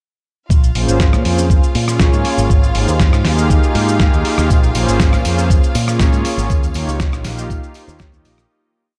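A dark, lightly reverberant production carries this short, groovy and cosmic nu-disco piece at 120 BPM in Bb dorian. A thumpy four-on-the-floor electronic kick and a gritty, tape-toned soul sampler kit of hi-hat, rim click, shaker and snare lay down a disco backbeat, while a punchy picked electric bass runs a funky syncopated line through an envelope filter over a Bbm9, Abmaj7, Bbm9, Eb7 progression. A detuned, warbling analog pad with chorus, tape echo and 12-bit grit plays rootless syncopated stabs against a bowed string section holding a high note with vibrato, both pumping with the sidechain alongside the bass, and a tambourine joins softly in the background at 4.5 seconds before the piece fades out from 5.8 seconds.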